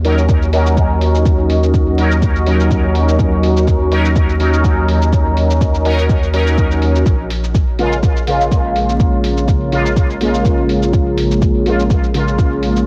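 Dub techno at 124 BPM with a light 16th-note swing, meditative and deep, this excerpt from a longer piece moves from Ebm7 to Bbm7 at 7.1 seconds as a juicy, detuned sawtooth polysynth fires up-front filter-swept stabs through phaser and dub echo, a round, wave-folded analog bass with tube saturation pumps beneath an overdriven electronic kick, a muffled, tape-softened hi-hat and cabasa sit low in the mix, and a moody, warbling pad of slow-attack chords enters at 0.4 seconds in the background, all within a lightly reverberant home cassette recording dusted with vinyl crackle.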